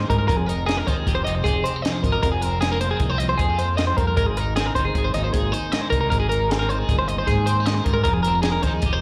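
A straight 5/4 pulse at 155 BPM drives this brief, playful and intricate slice of math rock and midwest emo, cut from a longer piece and heard as if at a live gig through the venue's PA with club reverb. A compact cocktail drum kit of hi-hat, kick and snare plays from 0.1 to 8.9 seconds, its sound dark and smooth with a high-tuned snare, a punchy kick and a rolled-off top. Two clean, picked, compressed twelve-string electric guitars run throughout. One sits up front with a warm accompaniment colored by harmonic tremolo and slapback echo, while the other spins bright arpeggios high above, treated with tape echo and slapback. Underneath, a growling fingered electric bass adds overdriven, punchy weight as the harmony moves from Fm11 to Abmaj9 and settles on Fm9 near the end.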